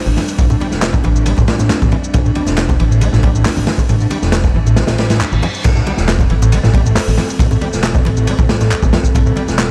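Funky and raw, this short breakbeat cut at 137 BPM sits in A minor on an Am7 chord, with a dark production, light reverb and a layer of vinyl crackle. A raw garage drum kit sits up front with a boomy kick, medium-tuned snare, hi-hat, ride and crash, its dark cymbals and rolled-off top sounding saturated and gritty in a small, pumping room. Electronic shaker and handclaps add a layered, produced sheen, while congas and bongos ring close and dry with hard hands at a very quiet level. A woody, thumpy pizzicato upright bass holds the low end, and an overdriven acid bass riff, squelchy and resonant with a filter sweep and ensemble chorus, squirms in the background. Over it all a warbly, nostalgic tape-like pad of detuned sawtooth and triangle tones holds sustained chords with chorus, built-in reverb, 12-bit sampler grit and sidechain pumping. A faint reverse cymbal rises from 5.1 seconds into a drop at 5.6 seconds, where a sub drop lands as the impact.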